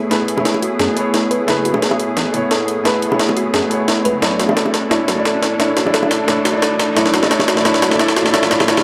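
A dark, lush hall-reverb sheen opens this melancholic liquid drum and bass fragment at 175 BPM in F# minor, where a soft felt-muted upright piano with audible action noise and digital delay sits up front beside a gritty, pitched-up breakbeat kit with a high-tuned snare, while a glassy FM pad with ensemble chorus, a round tine-like pluck arpeggio under tape echo and a filter sweep, tight soft-handed bongos, a deep saturated sub bass from 0.4 seconds and a very quiet electronic riser from 1.4 seconds fill out a build-up and drum fill moving from F#m11 to Bm11.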